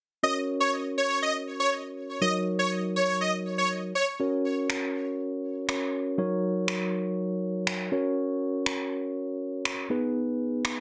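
A huge, detuned supersaw lead and a mellow tine electric piano open this carefree, summery dance-pop clip together at 0.2 seconds, moving from F# major to a D#m7 over F#. The sawtooth lead carries the melody in a bright, sustained unison, with a fast attack and a digital delay trailing behind it, before it drops out at 4.1 seconds. The electric piano continues as accompaniment, clean and mellow as if heard through built-in speakers. Electronic finger snaps join at 4.7 seconds, layered and overdriven, with soft clipping on the snare and the sound of a large room. The straight 4/4 groove sits at 121 BPM, with the chords returning to F# before closing on G#m. A wet studio reverb and a dense, heavily limited modern master keep the parts up front.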